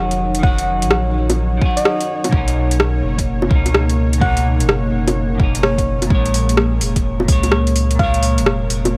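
Future garage with a wistful, nocturnal mood and a swung feel: an overdriven electronic kick joins a layered deep house kit of bongos, metallic hi-hats and rim clicks that sits up front beside a round, sine-like sub bass, with the sub bass, a moody detuned analog pad with chorus, and a clean semi-hollow electric guitar all pumping against the kick. The guitar carries a gritty vintage 12-bit sampler texture and digital delay. A soft, keys-like FM synth lead with vibrato, chorus and delay traces a gentle melody from 0.4 to 8.2 seconds over the Ebm7, Bmaj9 and Bbm7 chords, all under a steady bed of vinyl crackle.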